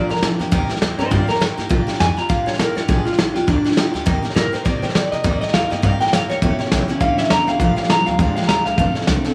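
A swung eighth-note feel at 204 BPM in 4/4 drives this upbeat, rowdy rockabilly excerpt in Bb major, cut from a longer piece. Up front, a vintage brush drum kit with a punchy kick, medium-tuned snare and hi-hat keeps time with a rolled-off top, while a pizzicato upright bass on gut strings adds a woody, thumpy low line. A picked steel-string dreadnought acoustic guitar fills out the accompaniment with a bright, full-bodied tone. An electric guitar through a small old amp carries a clean, twangy, slightly broken-up solo across the whole clip, colored by analog chorus and tape echo. At 6.4 s a second electric guitar enters in the background with a low riff as the harmony moves through Edim7, Bb6 and F6. Light reverb lends the studio room a gentle sense of space.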